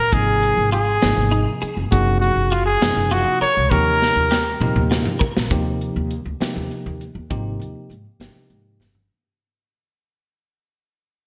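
Bright, polished 1980s-style digital production with a lush hall reverb frames this slick excerpt of electric jazz fusion in Eb major, set at 67 BPM in a straight 6/8. Up front, a warm trumpet with light vibrato carries the jazz-style melody until 4.9 s, supported by woody, thumpy pizzicato upright bass and bell-like tine electric piano chords moving through Abadd9, Gbmaj9 and Ebadd9. In the background, a dark, compressed clean electric guitar adds picked stabs with ensemble chorus. The crisp, airy fusion kit, with its punchy kick, medium-tuned snare and gated reverb, plays a drum fill from 3.7 s and another at 8.8 s, as the music fades out from 5.5 s.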